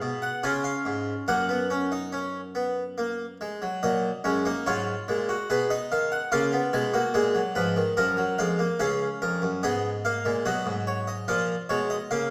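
Solemn and driving, this short cut from a longer baroque-style four-part fugue in 3/4 features a solo harpsichord with a full, plucked Italian-style tone from two sets of strings, placed up front in a reverberant recital hall, moving from its opening idea into a contrasting passage at 3.8 seconds that passes through G#m/B and C#7 before the first idea returns at 8.8 seconds and closes on A#m.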